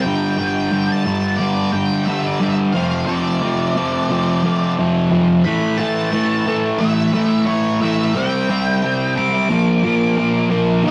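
A straight 4/4 rock groove carries this bittersweet, anthemic fragment, cut from a longer piece, as a double-tracked, overdriven electric guitar sits up front with a dark, picked riff moving through G5, F5, A5, C5 and Bb. Over it, an octave-fuzz lead guitar plays a distorted, picked solo melody across the full 10.9 seconds, set lower in the mix than the riff. A moderate stone-room reverb and the rough, saturated sound of a rehearsal-room recording give the whole fragment a gritty, live-in-the-room character.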